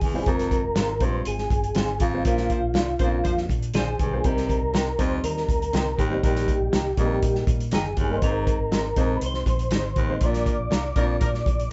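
Uplifting, danceable 1960s-style soul cut from a longer piece, where a mellow, percussive tonewheel organ with chorus vibrato carries the melody over a punchy, dark-toned soul drum kit, a round, foam-muted fingered bass, a raspy, gritty baritone saxophone riff, a woody, boxy upright piano, lo-fi, slightly broken-up guitar stabs from a small old amp, very quiet soft-handed congas and an airy, ringing vibraphone line, while a tight vintage horn section joins at 2.5 s for a band accent, all in a live room with light reverb.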